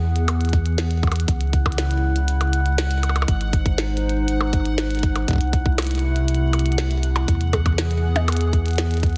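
A warbling, detuned pad with a lo-fi, nostalgic haze holds sustained chords through this wistful, playful IDM passage at 120 BPM in E major, its chorus and built-in reverb breathing under sidechain pumping as the harmony moves from E through C#m, G# and C6 back to E. A round, deep sine sub bass sits up front beside a tight electronic kick that arrives at 0.5 s, while a glitchy kit of tiny snare, clicky hats and percussion blips adds tape-tinged detail. High above, a bright, resonant sawtooth texture bubbles through random filter steps, and light room reverb frames this fragment cut from a longer piece.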